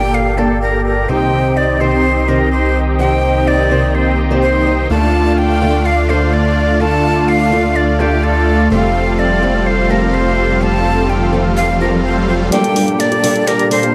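A breathy, bright flute with a chiff-edged attack and vibrato carries the melody up front from the opening of this anthemic, emotional festival progressive house cut in G minor at 126 BPM. Its dub echo trails over huge, detuned supersaw chords under a filter sweep, a lush slow-attack pad, a fat analog bass and a boxy fingerpicked archtop guitar in the background, all moving through Gmadd9, Cm, Dm and Fadd9. A very quiet riser enters at 10.7 seconds, and at 12.5 seconds a big-room drum kit with a huge snare and a mellow, wave-folded unison arpeggio lead arrive for a build-up and drum fill, set in a hall reverb within a dark production.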